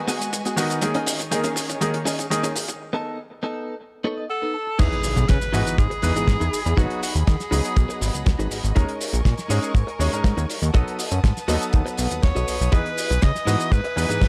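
A fat, detuned sawtooth analog bass with an evolving filter sweep arrives at 4.8 seconds alongside a tight, dry kick, anchoring this sensual, groovy nu-disco excerpt at 121 BPM as a clear, vibrato-laden tenor saxophone sings the melody from 4.3 to 8.2 seconds and returns at 12.2 seconds. Before that drop, a damped 70s drum kit with dark cymbals plays a fill, a compressed, direct-recorded clean electric guitar picks a chorus-soaked riff, a brilliant grand piano comps, and a smooth, bowed chamber string section holds sustained chords with sidechain pumping over G#m7, D#7sus4, B7 and Emaj7. A background electronic impact marks the drop, and a light small-room ambience surrounds the mix.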